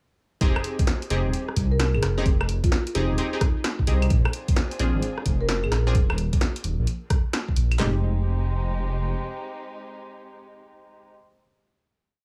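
A small, close room ambience frames this short, soulful and moody two-step garage piece, with a swung, skipping feel throughout. Up front, a layered garage kit pairs a knocking kick and cracking snare with handclaps and toms. A punchy analog drum machine adds tape-warm rim clicks, hi-hats and claves. Beneath them, a dark, detuned saw bass rumbles and beats with a saturated, deep tone. Bright, full-bodied chord stabs cut through with a filtered pluck, chorus and dub echo, while a mellow marimba played with soft mallets drifts in the background from 1.7 to 5.9 seconds. A veiled, muted violin section enters at 4.1 seconds with a sustained, pumping pad. It rings on with the stabs through the final chord after the drums stop at 7.9 seconds, joined by the bass until 9.1 seconds.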